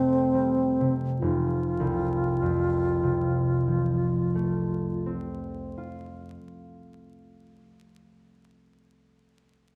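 The bright alto flute carries the melody from the start, its airy, vibrato-laden tone tongued and sitting up front with lifted highs, moving between C4 and F4 until it falls away at 5.1 seconds. Beneath it, a concert harp supplies a mellow, ringing accompaniment, thumb-plucked across a span from F1 to F4 and also placed up front, continuing on its own until 9.2 seconds. This is an impressionist classical duo in F major, luminous and dreamy, unfolding at a slow 37 BPM in 4/4 with a rubato feel and a slowing in the opening 1.2 seconds over an Fadd9 chord. The tuning rests at A4 = 439 Hz. A scoring-stage reverb with a 1.4-second tail bathes the pair, while the dark production and a layer of vinyl crackle lend a faded, intimate glow to this excerpt cut from a longer piece.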